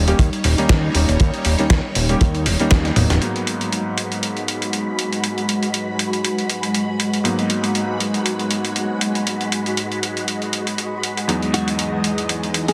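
A lush vintage string machine opens this sleek, sensual nu-disco excerpt, holding sustained sawtooth chords with a sub octave, phaser and ensemble chorus, up front and pumping against the sidechain over a D#7 chord. Beneath it, a fat, saturated analog bass with a fast filter pluck drives the opening, alongside a dry, tight acoustic kick. A gritty, compressed sampler-style kit of hi-hat, medium-tuned snare and toms keeps a 119 BPM groove swung on the sixteenths, and a drum fill leads into the G# minor section at 3.2 seconds, where the bass drops out. Throughout, a clear electric grand piano with a clangy low end plays underneath with tape echo and sidechain pumping, moving to G#m7 and later Emaj7. At 11.5 seconds, a warm, clean fingered electric guitar slips in behind the mix with subtle chorus and tape echo. A moderate plate reverb and heavy multiband compression give the whole track a squeezed, radio-ready sheen.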